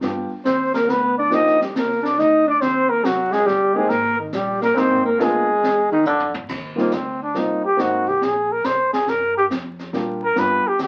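Relaxed and sophisticated, this short jazz waltz in small-group swing and bop style moves at 139 BPM in 3/4 with a swung feel, cut from a longer piece. A mellow, breathy trumpet with vibrato and a soft attack carries the melody up front from 0.5 seconds, joined by a raspy, growling alto saxophone playing a close-miked second line with scooped notes until 6.3 seconds. A baby grand piano with short sustain comps up front, briefly dropping out before returning at 3.7 seconds, while a woody pizzicato upright bass sits in the background. Played with brushes, the distant, roomy drum kit has dark cymbals, a high-tuned snare and a boomy kick, and a drum fill leads into the trumpet's intimate, whispered solo at 6.5 seconds over chords moving from Eb6 to Ab9 and Gm7. The whole sound carries the crackle of a very old 78 rpm record and the ambience of a small, reverberant room.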